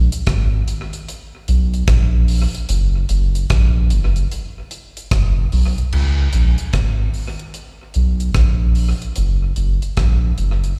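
Roots reggae at 74 BPM in 4/4, this short piece cut from a longer performance carries a serious, laid-back mood, with a 64% swing on the sixteenths giving it an easy lilt. A soft dub sub bass sits up front from the start, deep and round with a fast attack and sustained notes, its triangle and square wave tone ranging from F#1 to C#2. A deep reggae drum kit enters at 0.1 seconds, acoustic and dry, with a tight kick, rim clicks, hi-hat and dark crash cymbals, all touched by an analog delay and set back beneath the bass. The playing moves from one section into a second at 5.9 seconds. The sound is that of a live gig heard through the venue's PA, with a recital hall's reverb framing the otherwise close, spare mix.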